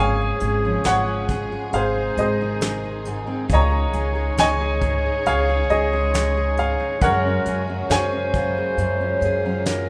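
A bright, slightly detuned upright piano carries the melody up front, its woody tone and audible action noise giving this heartfelt, nostalgic acoustic folk-pop ballad an intimate feel at a slow 68 BPM in Db major. A warm, classical-style clarinet sings a second line beside it, while a fingerpicked dreadnought steel-string guitar with fresh strings adds a full-bodied accompaniment. A pizzicato upright bass sits up front with a growly, woody low end, and a soft brush drum kit with a punchy kick and medium-tuned snare joins at 0.4 seconds. In the background, a dark chamber string section holds smooth, bowed chords with vibrato, and a felt-muted upright piano slips in barely audible arpeggios between 4.4 and 6.6 seconds. The chords move from Db over Ab through Ab and Dbsus2 to Gbadd9, all within a moderate large studio reverb in this short excerpt from a longer piece.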